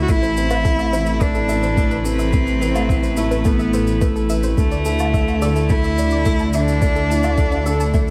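A close, lightly reverberant small-room sound frames this intimate, moving piano-and-strings electronica excerpt in A minor at 107 BPM, where an up-front solo cello sings a clear, intense melody with vibrato over a rich, nasal string quartet holding sustained chords in the background. A dark, mellow concert grand plays a riff while a rumbling detuned saw bass pumps with sidechain and a very quiet, punchy unison pluck traces arpeggios from 0.1 seconds. An overdriven, muffled electronic kick thumps beneath soft acoustic shaker and woodblock, as the harmony moves from Amadd9 to Dsus2 at 4.6 seconds.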